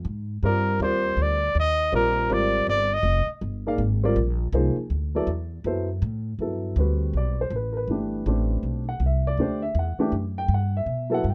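Modal jazz at a swung 161 BPM in 4/4, searching and hypnotic, this fragment of a longer piece sets a woody, thumpy pizzicato upright bass under a mellow, dark baby grand piano, while a smooth-topped solo trumpet with vibrato states a brief melody from 0.4 to 3.3 s before the harmony shifts from Eb major to G major at 6.4 s, all in a lightly reverberant, warm production.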